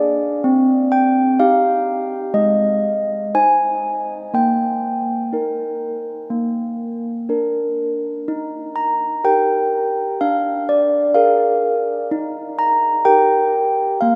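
A classical tune for solo handbells in Eb major, this short passage from a longer piece moves at a stately 62 BPM in a straight 4/4, with a mood both serene and festive. The handbells carry everything alone for the full 14.2 seconds, ranging from Ab3 up to Bb5, their tone clear and bell-like with soft clappers giving each note a mellow, gentle onset. They sit up front in the mix, ringing out into a cathedral reverb that lets every strike bloom and hang in the air. The harmony opens on C minor before settling through Ab, Eb over Bb and Bb, then returns home to Eb, passing through Bb7 over D at 10.2 seconds before resolving on Eb at 12.1 seconds. The result is a calm, luminous moment with a quietly celebratory glow.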